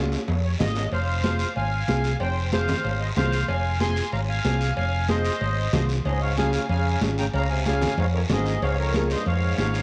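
A driving, fiery cumbia groove in F minor at 187 BPM rides on raspy guiro, hard-handed ringing congas, and background timbales and cowbell with a vintage metal-shell clang, while a dark, round hollow-body electric bass sits up front beneath a fingerpicked, full-bodied nylon-string guitar. A sweet, airy accordion carries the melody with a light tremolo tuning and a cassette-tape tint, over chords moving from Db to Fm. At 6.1 s, as the harmony returns to Db, a gritty, growling trombone enters with vibrato and scooped notes, all wrapped in a moderate spring reverb on a home cassette recording cut from a longer piece.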